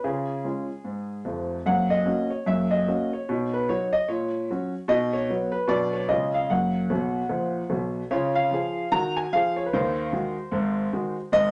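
Stride piano jazz at a playful, exuberant 149 BPM with a swung 4/4 feel, this fragment of a longer piece is a solo grand piano tuned slightly low to A4 = 436 Hz, starting in F# major. The piano sounds intimate and boxy, with audible action noise and long sustain, sitting up front in a wet studio reverb. A fill at 6.9 s leads into a new section in Db major at 8.1 s, carrying on until the cut at 11.5 s.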